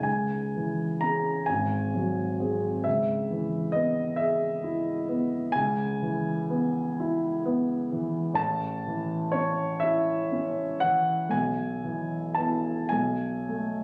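Serene and nostalgic, this romantic classical nocturne for solo piano unfolds in 6/8 with a free, rubato feel. A warm concert grand carries the whole passage alone, sitting up front with a deep bass. Its range stretches from G#1 up to A#5. The harmony moves through C#m, G#7 and C#m7 before settling onto A at 8.4 seconds and passing through E/B near the close. The sound, captured on a phone in the room, blends a moderate recital hall reverb with a club-like ambience, and the passage is cut from a longer piece, ending at 13.8 seconds.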